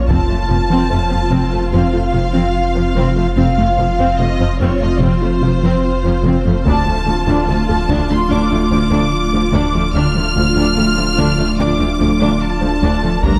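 A smooth, vibrato-rich violin section carries the melody from the first moment, set over lush, expressive violas, a calm organ-like pad with ensemble chorus and its own reverb, and a deep, round sub bass. This cinematic piece blends orchestral and electronic scoring and feels vast and futuristic, moving in a steady, straight 4/4. A tight, very quiet sequenced synth with a mellow sawtooth-and-triangle filter pluck, chorus and phaser drives arpeggios underneath, while a rich chamber double bass section and a cello section sit in the background as bowed low support. The harmony rests on F before shifting to D minor at 6.7 seconds, and a hard-stick taiko ensemble, heard in a small room, strikes in at 0.1 seconds and again at that change. A moderate scoring-stage reverb gives the whole arrangement a full, spacious setting, and the recording is a brief cut from a longer work.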